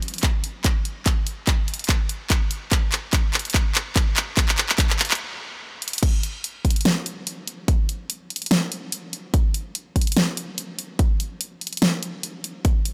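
Dreamy and emotional, this future bass excerpt in a swung half-time feel pairs an up-front pop drum kit of crash cymbal, handclaps, hi-hat and fat snare with a punchy, layered electronic kick, building through a drum fill until a stop at 5.2 seconds gives way to the drop at 6.0 seconds, all set in light reverb and small room ambience.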